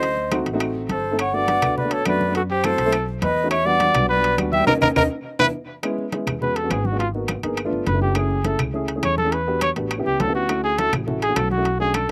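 Dry, open-air sound with barely any reverb frames this lively, sunny Afro-Cuban jazz excerpt, where a mellow, breathy trumpet with scooped notes leads up front, a tongued concert flute with vibrato and slapback echo adds a second line until 5.5 s, a dark, woody upright piano with short sustain accompanies over steel-string pizzicato upright bass, and thick-skinned, damped congas and small-room claves sit in the background beside ringing metal-shell timbales with slapback echo, before a band accent and drum fill lead into the trumpet solo at 5.8 s.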